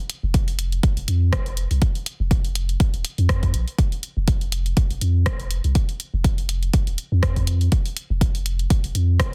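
Hypnotic and sparse, this minimal techno excerpt swings lightly in 4/4 as a punchy, layered electronic kick sits up front beside a deep sine sub bass with a pitch-drop attack and sidechain pumping, while a tape-warm house kit of hi-hat and rim click, re-recorded in a large room, adds a soft-clipped snare under a dense, heavily limited master with little reverb.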